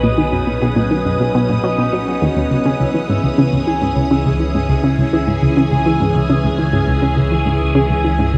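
Ambient, sequencer-driven space music with a cosmic, luminous mood, moving in a steady, straight 4/4 through a short passage cut from a longer piece. Up front, a vintage phased string machine holds swirling sustained chords with a slow attack and long release, thickened by ensemble chorus and a shimmer reverb that makes it glow. Beneath it, a bright, nasal analog pluck drives the riff with a fast attack and short decay, its wave-folded sawtooth edge carried through chorus and tape echo. A thumb-plucked concert harp rings out acoustic arpeggios through tape echo and shimmer, while a fat, detuned, saturated analog bass anchors the low end. The harmony moves from B to C#madd9 at 2.5 seconds, and the whole mix sits in a huge, wet ambient space with a reverb tail of 7.5 seconds.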